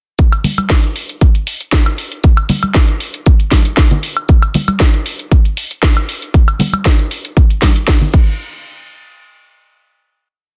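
A dense, heavily limited mix with little reverb carries this sleek, groovy nu-disco drum piece, where a punchy, up-front four-on-the-floor electronic kick and a layered house kit of cracking backbeat snare, hi-hat, shaker, woodblock and crash run from 0.2 to 8.2 seconds, joined at 0.4 seconds by bright, damped, close congas, before a final hit at 8.4 seconds closes the piece.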